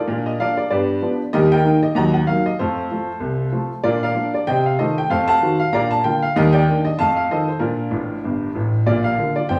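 A brisk 191 BPM swing in 4/4, with the eighth notes lightly swung, drives this short, playful stride piano clip in Bb major, cut from a longer piece. The grand piano carries everything by itself, ranging from a low F1 up to Bb5, and its tone is warm, intimate and a little boxy, with the mechanical action noise clearly audible. The piano sits up front, wrapped in a wet studio reverb and room ambience that lend a sense of listening from further back in the space. The harmony moves through a lively stride progression, from Bb and G7 to Eb and a darker Ebm, then through F7 and F7b9 before settling on Ebmaj7, F7 and home to Bb. A quick piano fill from 7.9 to 8.9 seconds caps the passage before it closes at 9.6 seconds.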